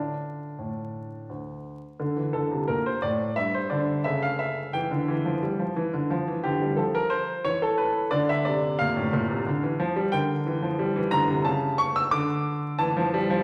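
Classical-period piano sonatina in 3/4 with a restless, serious mood, played on a solo baby grand piano that sounds present, polished and up front, with short sustain across a range from D2 to E6. The harmony circles D minor, passing through suspended and inverted chords with brief chordless moments around 7.4 and 11.5 seconds. A wet recital hall reverb surrounds the instrument, while a layer of vinyl crackle sits beneath this short cut from a longer piece.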